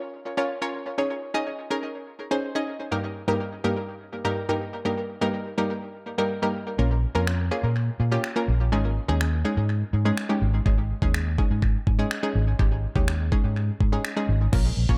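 A full-bodied sawtooth analog pluck with a noise layer opens this bittersweet, driving dance-pop excerpt alone, its quick filtered notes shimmering with chorus, pumping against the sidechain and trailing analog delay over Bbm, Absus4 and Eb/G. At 6.8 seconds a dark, foam-muted electric bass arrives up front, round and punchy with the same pumping. At 7.3 seconds a polished electronic R&B kit follows with a knocking kick, finger snaps, crash cymbal and delay, all set in a moderate spring reverb within an echo-heavy mix.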